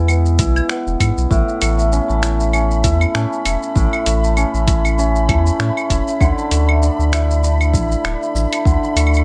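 A shimmering hammered dulcimer plays ringing arpeggios, carried by tape echo and plate reverb, through this delicate, playful folktronica excerpt at 98 BPM with a light 16th-note swing, moving from E to A at 1.3 s and to Dsus2 at 6.2 s. A round sine sub bass sits up front beneath a muffled, pitched-down sampler-style kit of claves, finger snaps, hi-hat and shaker, with both that kit and a soft electronic kick carrying overdrive. An airy vibraphone with medium mallets and fast motor vibrato adds a second line as the harmony shifts to A, while a grainy, flickering granular texture hovers faintly in the background.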